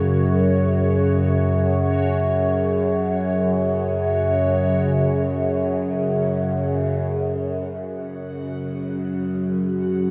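An up-front, resonant sawtooth-and-sine drone with moving overtones, chorus and phaser anchors this vast, ominous dark ambient fragment, while a much quieter, detuned, bubbling texture with random filter steps fades out over the first 7.4 seconds, both parts sustained and cloaked in chorus and reverb within an immense, echoing space.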